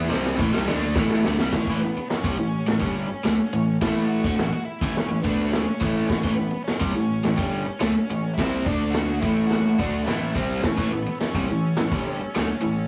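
Raw and rowdy, this garage rock cut at 105 BPM in A major drives on an up-front, bright, double-tracked overdriven guitar riff and a punchy, round fuzz bass sitting in the background, while a vintage drum kit with dark cymbals and a tight kick opens with a fill, a very quiet reedy combo organ with heavy vibrato holds sustained chords at the start and again from 10.6 seconds, and a dark octave-fuzz lead guitar carries the melody from 1.5 seconds, all in a rough rehearsal-room sound with wet reverb.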